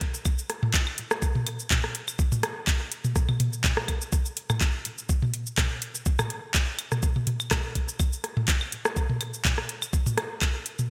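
A lightly swung techno groove runs through this sparse, hypnotic drum passage cut from a longer piece, built on an overdriven, knocking electronic kick drum and a layered garage kit of handclaps, shaker and metallic hi-hats, also overdriven and touched with gated reverb. From 0.3 s a booming, tape-warm analog drum machine adds claves, rim clicks and toms, set with gated reverb and digital delay. All three parts sit up front in a bright 1980s-style digital production with light ambience.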